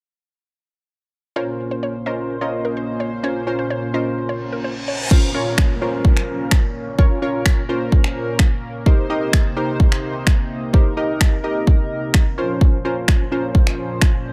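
Set in a digital ambience, this energetic, confident dance-pop excerpt opens at 1.4 seconds with three synths breathing together under sidechain pumping. A hollow, bouncy square-wave pluck carries the short melody until 5.0 seconds, while a funky, detuned polysynth comp with a mellow filter pluck and a shimmering, airy pulse-width pad with a sub octave hold the harmony throughout. An electronic reverse cymbal and downlifter enter in the background at 4.5 seconds, the reverse cymbal leading into the pop drum kit's arrival at 5.1 seconds. The kit is up front and overdriven, with a punchy kick, crash cymbal and finger snaps. The chords move from a minor add-nine to a minor seventh and back.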